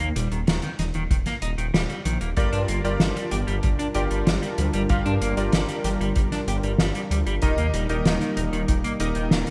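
A bright, 1980s-style digital production with light reverb frames this moody, nostalgic synthwave excerpt in G minor, moving at 95 BPM in a straight 4/4. From the start, a clean, picked electric guitar plays a riff steeped in lush chorus and digital delay, over a thick, detuned saw bass that sits up front with a saturated, chorused edge. A soft-mallet drum kit keeps hi-hat and a fat snare close and forward, washed in gated reverb, while a boomy, big-room kick enters at 1.1 seconds. At 2.4 seconds, as the harmony moves from Eb to Gm7, a smooth, warbling analog pad arrives with slow-attack sustained chords and sidechain pumping. A cutting, clangy electric grand piano joins at the same moment with vintage-tinged stabs under analog chorus and digital delay, and the chords return to Eb at 7.4 seconds before the cut.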